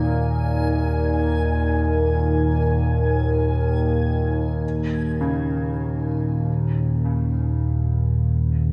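Desolate and unsettling, this free-time dark ambient drone excerpt opens with a nasal, evolving analog drone up front in the low register beneath a deep, detuned pad of sustained chords and a reversed, dreamy swelling texture, both fading by 4.7 s, before a worn, intimate baby grand piano with audible action noise enters at 5.2 s with arpeggios through an analog delay, all set in an echo-heavy mix with a wet echo chamber reverb and small room ambience.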